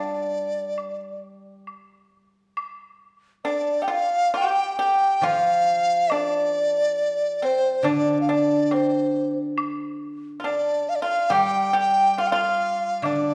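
A graceful, wistful Chinese chamber piece in D yu mode opens with a hollow, buzzing bamboo dizi carrying the melody up front, its pure, mellow tone shaded by vibrato and a soft attack. Beneath it, a bright, percussive, fingerpicked pipa plays a second line, and a silvery, ringing steel-string zither sits up front with accompaniment in its low register. From 0.8 seconds a dark, close woodblock joins, and the ensemble moves freely in rubato at about 69 BPM in 4/4, set in the lush reverberation of a recital hall, in this passage cut from a longer performance.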